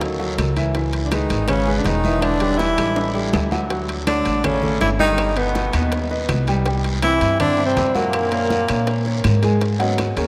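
Afro-Cuban jazz at a brisk 162 BPM, fiery yet sophisticated, cut from a longer piece, where a breathy, whispered tenor saxophone with light vibrato and analog delay carries the melody up front from 1.1 seconds over a buzzy, metal-muted trombone second line in the background, a woody, thumpy pizzicato upright bass, warm grand piano chords moving from Dadd9 through Gaug to G#m11, very quiet congas, bongos, ringing timbales and dry claves, and a raspy guiro, with a drum fill at 3.0 seconds, all set in a vast, echoing cathedral reverb.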